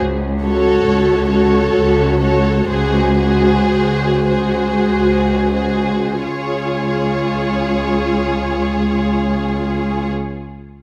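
A cello section opens alone at 0.0 seconds, sounding a deep, up-front Db2 beneath this slow, lyrical romantic movement for string orchestra in Db major and 3/4, before violins and violas join at 0.4 seconds. The tempo moves freely between 42 and 71 BPM with a rubato feel, slowing down through the first 6.2 seconds over a Gbm/Db harmony that settles onto Db when the second section begins. One violin section carries the melody between C5 and Db5 with rich, expressive vibrato, while a second violin section with a soft attack and lush tone sings a second line from Ab4 to A4. The violas fill in the accompaniment between F4 and Gb4, their warm bowing marked by vibrato and portamento, which the cellos share as well. A moderate scoring-stage reverb of about 1.6 seconds gives the close, ensemble sound a gentle bloom in this short passage cut from a longer piece.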